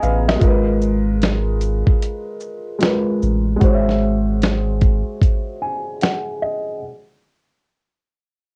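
Melancholic and reflective, this brief lo-fi hip hop excerpt at 75 BPM with swung sixteenths opens on a short drum fill from a gritty, compressed sampler-style kit with a thumpy kick, medium-tuned snare, hi-hat and shaker, beneath a deep, round dub sub bass that drops out at 5.0 seconds, while a muted, intimate upright piano with audible action noise and cassette-tape haze moves from G#m69 to G#7b13 under a filter sweep and closes on a fill that ends at 6.8 seconds, set in a modest studio reverb with the character of a home cassette recording.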